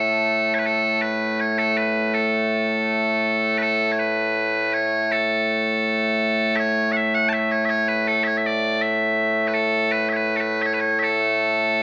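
Scottish traditional pipe music in A major, this short, ceremonial and stirring cut from a longer piece moves at 81 BPM in a straight 2/4. Solo bagpipes sound throughout the 11.8 seconds, loud, bright and piercing, with a continuous tone that ranges from A2 to A5 and sits up front. The opening strain returns at 3.6 seconds, and a moderate reverb from a large studio gives the pipes a sense of space.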